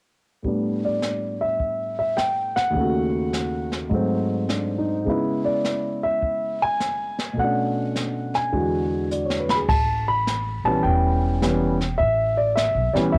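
A playful, swinging jazz piano trio cut from a longer piece, moving at 104 BPM in 4/4 with a swung eighth-note feel and tuned slightly below standard pitch. A dark, mellow baby grand carries the melody from the start, sitting up front with an intimate character, audible action noise and a cassette-tape tint. Alongside it, a brushed drum kit plays throughout with an airy, polished sound, dark cymbals, a high-tuned snare and a boomy kick, and a drum fill at 9.1 seconds leads into a new section. At 9.7 seconds a woody, thumpy pizzicato upright bass enters low in its range, as the harmony lands on A9 after a progression that begins on A9sus4 and passes through C#m7, Bm9 and E9. The whole recording has a homey cassette quality with light reverb.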